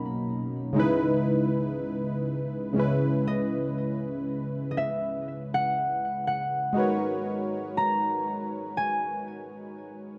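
A thumb-plucked concert harp carries the melody, its ringing acoustic tone sitting up front and trailed by delay. Beneath it, analog keys built from detuned sawtooth and square waves with a sub octave, a filter sweep and chorus lay down round, mellow chords with a fast attack that decays. They move from Bmaj7 and C#m9 to C#m7 at 2.8 seconds and G#m11 at 6.8 seconds. This short excerpt of moody, sensual R&B in C# dorian moves at a slow 60 BPM with a light sixteenth-note swing, framed by a dark, warm production with light reverb and small room ambience.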